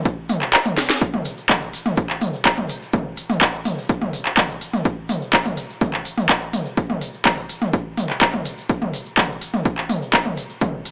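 A punchy electronic kick and a grainy, bright egg shaker open this dark, hypnotic techno cut at 0.1 seconds, joined almost at once by an up-front electronic drum kit of handclaps, smooth hi-hats, toms and a cracking snare, all running at 125 BPM in a straight 4/4. The kick drops out around 0.5 seconds, and a drum fill lands at 0.8 seconds before the groove settles in, with the shaker sitting in the background behind the kick and kit. The sound is dry and gritty, with a small-speaker character and tape-warm drums that carry the feel of a small room.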